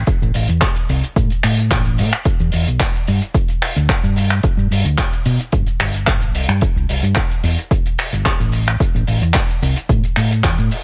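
A round, dark hollow-body electric bass opens this short nu-disco excerpt, fingered up front and amped as it moves between G1 and B2 at 110 BPM in a straight 4/4 feel. Just after, at 0.1 seconds, a damped 70s drum kit joins with finger snaps, handclaps, hi-hat and shaker, its dry, rolled-off top sitting close, while a layered, tape-warm electronic kick adds a punchy pulse beneath. The sound is sleek and cosmic, with little reverb, and the tuning sits slightly above standard at A4 = 441 Hz.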